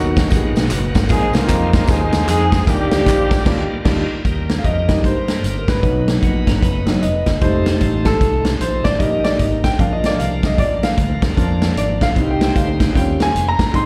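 Heard through a club PA with small-room ambience, this hopeful, jubilant uptempo gospel cut swings at 152 BPM in Eb major: a mellow horn section with vibrato carries the melody until 3.9 seconds over tambourine and handclaps, a punchy big-band drum kit, a bright fingered electric bass and a shouting overdriven tonewheel organ on a slow rotary speaker, then after a band accent the intimate concert grand piano, with its audible action noise, takes a solo from 4.3 seconds while a twangy, clean electric guitar with spring reverb slips in briefly at 6.2 seconds.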